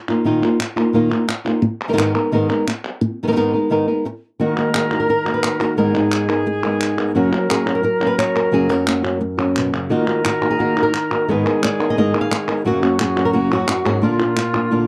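Flamenco at 174 BPM in 4/4, this mournful, dramatic passage is cut from a longer piece and captured in a dry, close 1970s-style studio sound with little reverb. A fingerpicked flamenco guitar carries the melody from the start, up front and acoustic, ranging from Gb2 to F5, while crisp palmas hand claps with a live-room feel keep time beneath it. At 4.4 seconds a second fingerpicked guitar joins with stabbing chords, its fresh strings giving a warm, up-front presence, and a baroque flute enters with a pure wooden tone, soft attack and vibrato, sounding distant and slightly unsteady as it traces a second line between F4 and Bb4. The harmony opens on Bbsus4 and Abmadd9, then cycles through Ebm, Abmadd9 and Gb before landing on Bb at 14.0 seconds. The guitars sit forward in the mix, with the claps and flute further back, giving the passage an intimate, brooding character.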